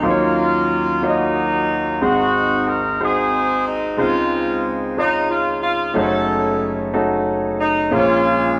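Reverent and uplifting, this short gospel passage, cut from a longer piece, moves in a straight 6/8 feel and is tuned slightly below standard pitch to A4 = 435 Hz. A warm horn section carries the melody from start to finish, its jazz-style ensemble voicing sitting up front yet carrying a distant, roomy quality. A clear concert grand piano accompanies throughout, with deep bass reaching down to Gb1, a natural tone and long sustain, also placed up front. The harmony travels from Ebm9 through Ab7 to Dbmaj9, then turns to a darker Gbm6 at 6.0 seconds before settling on Bbm7 near the end. The two parts were played live together in one room, and a wet stone-room reverb with a one-second decay gives the whole performance a churchlike glow.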